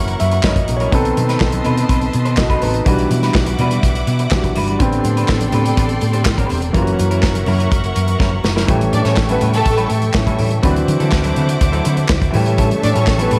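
Set in a light small-room ambience, this sultry, danceable disco passage at 123 BPM opens with a concert grand piano fill as a round, punchy hollow-body bass and an up-front soul drum kit with tight kick, snare, hi-hat and handclaps drive it along, while a slightly broken-up electric guitar with spring reverb, distant lush string chords, very quiet bright congas and brief expressive violin-section lines at 8.9 and 12.8 seconds colour the chords from F#7 through Em9/B and Am11 to A7 and D9.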